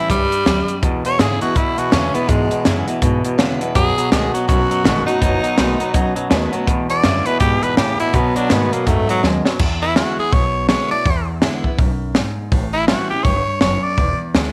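A raspy, gritty tenor saxophone with slapback echo opens this rowdy, rollicking rockabilly excerpt at a swinging 164 BPM in E mixolydian, over a bright, full-bodied picked steel-string acoustic guitar. Pizzicato upright bass with a woody, thumpy gut-string tone and an up-front compact cocktail kit, with its punchy kick, high-tuned snare and dark cymbals, join almost at once, and a clean, twangy electric guitar riff runs from 0.8 seconds. A drum fill from 9.2 seconds closes the opening section as the riff drops out, and the close-miked saxophone moves into a scooped, vibrato-laden solo from 9.6 seconds, all in a small room with light reverb.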